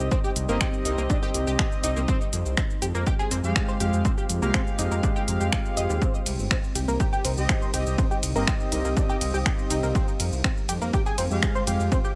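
A punchy, up-front electronic kick drives this dark, dramatic melodic techno excerpt, as bold, brassy synth stabs with 12-bit grit and delay ride over a rumbling detuned saw bass, a tight, nasal sequenced arpeggio, a techno kit of finger snaps, smooth hats, ride and shaker, and a moody background pad, all pumping against the kick through a C minor to F minor add9 progression.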